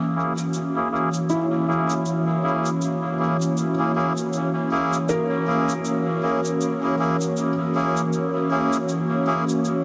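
A swung sixteenth-note groove at 79 BPM in 4/4 carries this hazy, spacious ambient dub excerpt, which rests on a single F#7 chord in F# mixolydian. An airy, breathy pad with a detuned, chorused shimmer holds sustained chords up front from the start, while a reedy, nasal, close-miked melodica jabs short stabs through a low-pass filter and dub echo, and a tape-flavoured electronic cabasa ticks along beneath them from 0.4 seconds. From 1.3 seconds a felt-muted upright piano adds soft, intimate arpeggios in the background, its action noise audible through its own filter and echo, all set in a huge, wet reverb with lossy compression artefacts.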